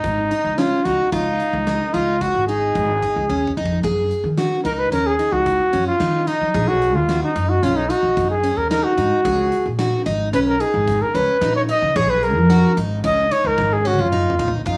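Cassette tape color and a small-room home-recording ambience frame this driving, intricate progressive instrumental, cut from a longer piece and set in 5/4 at 111 BPM in Db mixolydian. A breathy, whispered trumpet sits close and up front with gentle vibrato, taking a solo from 3.8 seconds over shimmering, octave-doubled twelve-string acoustic guitar arpeggios, both carrying a tape-tinged plate reverb. Beneath them, a woody, thumpy pizzicato upright bass stands forward, while a dark, smooth rock kit with a punchy kick stays in the background and plays fills at 3.3 and 13.6 seconds.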